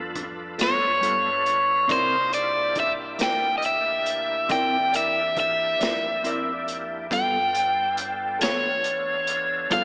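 A slow, laid-back blues in 12/8, this gritty piece moves from G9 to C9 and back to G9. A thick, full tonewheel organ holds sustained chords through a slow rotary speaker and chorus vibrato, over a woody pizzicato upright bass in the background, and a crunchy breakbeat kit with tight kick, snare and hi-hat enters at 0.2 seconds, saturated and rolled-off on top. From 0.6 seconds a bright, compressed, overdriven electric guitar carries the melody up front with slapback echo, while a dark, clean, fingered electric guitar accompanies through harmonic tremolo, the band set in a lush hall reverb with a big arena sound.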